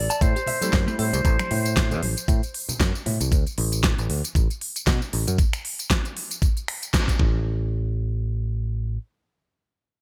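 A knocking electronic kick and a layered pop kit of finger snaps, crisp hi-hats, fat snare and tambourine drive a sensual, groovy nu-disco drop at 116 BPM in 4/4 with a light sixteenth-note swing, while soft-handed congas sit in the background and a growly, tube-saturated fingered bass holds the low end up front over Am7 moving to D5. Brief touches arrive early: a pure, distant concert flute melody with vibrato and digital delay, a bright, clean picked guitar riff with lush chorus and delay, and a warm vintage electric grand piano with a clangy low end, subtle chorus, sidechain pumping and delay. A band accent hits at 6.9 seconds before the drop ends at 7.5 seconds, all wrapped in the light digital ambience of a bright 1980s-style production in this cut from a longer piece.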